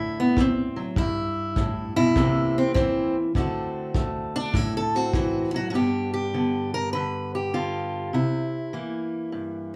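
Gritty and soulful, this excerpt of acoustic country blues swings at 101 BPM in G major as a boxy, up-front fingerpicked steel-string parlour guitar carries the melody through D7, C7 and G7 changes, soloing until 5.7 s with a touch of plate reverb, while a distant, punchy kick drum with a rolled-off top sounds from 0.4 to 5.3 s in a small, roomy space.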